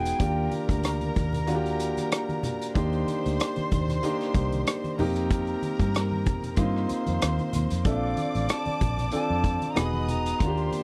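The recording is dry and close, with little reverb, and this short excerpt is cut from a longer piece of lush, smooth 1970s-style soul with a gentle swung sixteenth-note feel. A vintage drum kit sits up front, with a punchy kick, hi-hat and rim click in a small, pumping room with a rolled-off top. A dark, round, foam-muted fingered electric bass comes through an amp beneath it. Low-tuned congas with a bright, thin-skinned tone join at 0.5 seconds, played with soft hands and set in the background of a live room. A clear, intimate grand piano with audible action noise, deep bass and a slightly boxy, long-sustaining tone carries the accompaniment, while a bowed studio string section with vibrato and a smooth, focused top holds a lush second line throughout. A hollow, airy flute with a crisp attack and vibrato, miked close, touches the melody at the very start and returns at 7.9 seconds, over harmony moving from Ebmaj7 through Cm7 and F9sus4 to Bbmaj7 and Emaj7.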